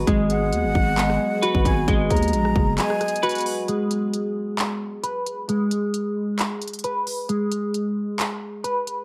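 A clean, up-front semi-hollow electric guitar plays picked arpeggios throughout this eerie, hard-hitting half-time trap excerpt, its hollow-body tone colored by analog chorus, a low-pass filter and tape echo. Around it, a breathy jazz flute with vibrato and tape echo carries a second line, a fingerpicked concert harp rings under a low-pass filter, a very quiet glassy FM pad holds ethereal chords, and a growling, buzzy 808-style bass drops out at 2.8 s, with the flute and pad following at 3.6 s and the harp at 5.7 s. Entering at 0.1 s, an up-front electronic trap kit drives it all with a hard-clipped kick, crisp hi-hats, handclaps and rim clicks, set in light reverb and digital ambience.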